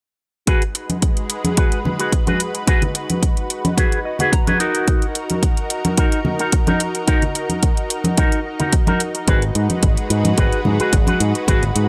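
Nu-disco with a cosmic, groovy mood: a twangy, envelope-filtered electric guitar riff carrying vintage 12-bit sampler grit and analog delay rides over a lush, detuned pad pumping under sidechain, a punchy up-front electronic kick, metallic hi-hats and low-tuned congas, with a clean guitar fill at 3.8 s and a bright picked electric bass through its own envelope filter joining at 9.3 s in this dry, gritty excerpt.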